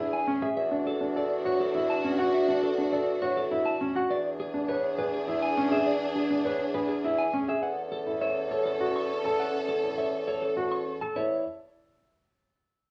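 In a straight 3/4 at 102 BPM, this minimalist pattern piece in a classical vein moves with a propulsive, bright feel, tuned to A4 = 437 Hz. A concert grand piano sits up front with deep-bass arpeggios, while a slightly broken-up, compressed electric guitar carries the picked melody across a range of G#4 to C#6. A mellow French horn with light vibrato adds a second line in the background, a lush bowed violin section holds smooth sustained chords, and a distant, roomy bassoon anchors the bass on E2. The harmony rests over E, moving from E7 to D/E, back to E7 and then A/E, before the parts stop by 11.4 seconds and a brief chordless stretch closes the cut. The recording carries light reverb, small room ambience and the worn, warbly pitch drift of old cassette tape, and it is taken from a longer piece.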